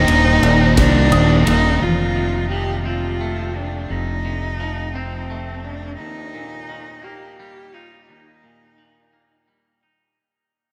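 This excerpt from a longer post-rock piece opens with a full, euphoric burst in Eb lydian: a rich, bowed solo cello sings an up-front melody with vibrato and analog delay, over a growly, bright fingered electric bass and two distorted fuzz guitars playing a low riff, one compressed, the other brighter. Behind them, a felt-muted upright piano plays soft arpeggios with audible action noise and its own delay, a very quiet breathy, detuned pad holds slow-blooming chords, and a huge arena drum kit with a fat snare, punchy kick and ride cymbal sits in the background. At a slow 57 BPM in a straight 6/8, the opening moves from Ebmaj7 to F7. The drums drop out at 1.6 seconds, and at 1.8 seconds the fuzz guitars, piano and pad give way to a clean, twangy, scooped electric guitar arpeggiating through its own delay. The cello keeps singing as the music begins fading out, the bass drops away at 5.9 seconds, and the harmony settles on Eb. 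The cinematic, dreamy mix is soaked in a vast ambient reverb with a long 7.9-second tail, which lets the guitar ring on alone after the cello ends at 9.4 seconds.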